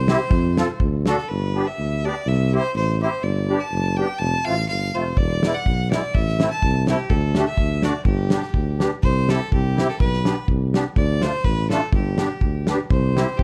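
Alpine folk dance music with a jolly, festive lilt, led by a biting, bright fiddle melody over shimmering musette accordion, a dark, close-miked tuba bass up front, and a small-room acoustic drum kit with a fat snare and tight kick that drops out after 1.2 seconds and returns at 5.2 seconds, all in a dry, mellow production cut from a longer piece.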